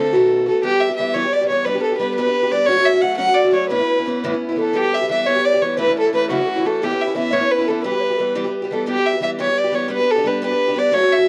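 Celtic folk jig in E dorian at 117 BPM in 6/8, dark, lively and driving: a single woody, bowed fiddle with light vibrato carries the melody up front, a picked archtop guitar with boxy, fresh-string tone picks out chords such as Em, G, F#m and Aadd9 alongside it, also up front, and a very quiet, distant, hollow wooden flute plays a pure, tongued second line until it drops out at 8.5 s, all in a dry, close 1970s-style studio sound with a touch of small-room reverb in this short fragment of a longer piece.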